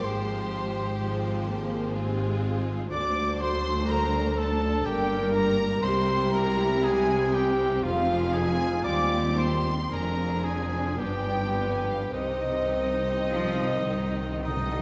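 A dark, distant French horn section sustains chords beneath a solemn, yearning C minor orchestral passage in slow, rubato 3/4, cut from a longer piece, while a lush, bowed violin section carries the melody with vibrato. A mellow flute ensemble, a solo cor anglais with light vibrato and a second violin line fill in the middle, over expressive violas, focused cellos and rich, even double basses, all bathed in a scoring-stage reverb. Articulate timpani played with hard mallets enter at 12.1 seconds as the harmony settles on C minor, and a roomy trumpet section adds a brief stab at 14.4 seconds.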